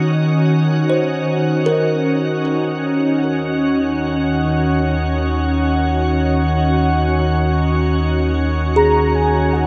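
Washed in a vast cathedral-like reverb, this melancholic, spacious ambient fragment in free time and Eb dorian rests on a pure, full-bodied organ-like pad sustaining an Ebm7 chord with ensemble chorus throughout, while a woody kalimba with tape echo plucks brief arpeggios at the start, a round, deep analog bass enters at 2.4 seconds, a glassy texture of drifting overtones joins at 4.1 seconds, and at 8.8 seconds the kalimba returns beside a velvety synth lead with vibrato and a cassette-tape tint.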